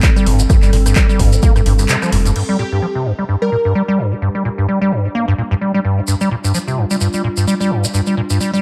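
Acid house with a trippy, raw mood, built on a squelchy, resonant square-wave acid bass riff that sits up front with subtle chorus, analog delay and sidechain pumping, over a warbling, lo-fi pad of detuned sustained chords that carries a filter sweep from 2.4 seconds. A punchy kick recorded in a large room, a tape-warm analog drum machine with crash, handclaps, hi-hat and rim click, grainy maracas and a round, deep analog bass drive the opening before a break and band accent at 1.9 seconds. A catchy, full-bodied unison lead with vibrato and analog delay then appears briefly from 2.6 seconds, before the maracas return at 6.1 seconds in this cut from a longer piece.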